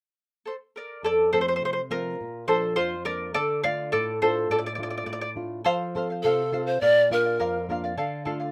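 This short, wistful, earthy Andean folk passage, cut from a longer piece, opens with a fingerpicked charango at 0.5 s. Its shimmering double strings, some doubled at the octave, sit up front. A nylon-string guitar joins at 1.0 s, thumb-plucked in a classical manner, with the odd finger squeak and a softer place in the mix. Over a straight 2/4 pulse at 104 BPM, the charango carries a solo through the middle stretch while the harmony moves from F to D minor. At 6.2 s a breathy, polished pan flute steps forward with a woody tone, crisp chiff on each attack and expressive vibrato, and it sounds somewhat distant despite its prominent level. The chords shift through F, B-flat and D minor under a moderate studio reverb, giving the rough home-demo mix a modest sense of space.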